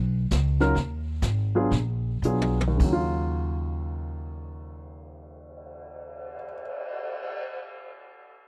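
A dry, close 1970s-style studio sound in a small room frames this smoky, swinging jazz piano trio excerpt in Eb minor, with a tempo that moves between 103 and 141 BPM and slows over the opening 2.8 seconds. Up front, a woody, dark pizzicato upright bass with steel strings sits beneath a mellow, intimate baby grand piano whose short sustain and audible action noise carry the melody. A vintage brush kit with a punchy kick and medium-tuned snare plays a drum fill from 2.2 to 2.8 seconds, as the harmony passes through Bb7b9b13 to settle on Ebm9.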